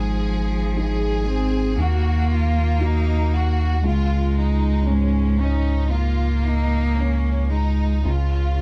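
Intimate and hopeful, this short neoclassical passage in Db major drifts at a rubato 58 BPM, with a rich violin section carrying the melody in light vibrato with a smooth top, a clear, focused solo cello singing a second line beneath it, a soft felt-muted upright piano murmuring accompaniment in the background with audible action noise, and a deep, round sub bass sitting up front, all set in a dark production with light reverb as the harmony passes through Ebm and Dbadd9 before settling on Db.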